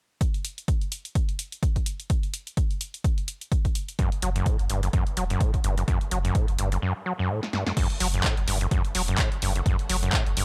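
Swung at 56% on the sixteenths in 4/4 at 127 BPM, this raw, trippy acid house cut opens at 0.2 s with a punchy, up-front analog kick and a drum machine of crash cymbal, handclaps, hi-hat and snare, both parts overdriven. A short room sits on the snare, clap and hats. At 4.0 s a squelchy, resonant sawtooth acid bass riff arrives in F# phrygian, ranging from F#2 to F#3. It is saturated and up front, with fast filter plucks, sidechain pumping and analog delay, and a deep, thick triangle sub bass joins just after, also pumping. A break and a drum fill lead into a new section at 7.8 s, where a very quiet, reedy chamber string ensemble with a period-style gut-string tone bows over an F#m7 chord, between C#4 and F#5. The whole excerpt has a dry, gritty hardware sound with little reverb.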